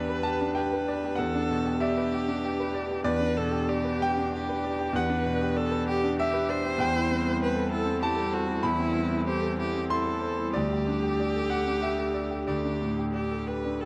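Heard through a moderate concert hall reverb, this passage cut from a longer neoclassical piece for piano and strings feels melancholic and full of longing. It unfolds at 96 BPM in 3/4 with a rubato feel, set in E minor and moving from Em7 to Am7/E at 6.8 seconds and Dsus4 at 10.5 seconds. A clear concert grand piano sits up front as accompaniment, natural in tone, with deep bass and long sustain. A single bowed viola, rich and focused with vibrato, shares the foreground as accompaniment in a range between E4 and C5. Beneath them, a very quiet pad enters at 0.2 seconds to hold sustained chords, its warbling, lo-fi voice built from square and triangle waves, with slow attack, long release, chorus and its own reverb giving a dark, nostalgic shade.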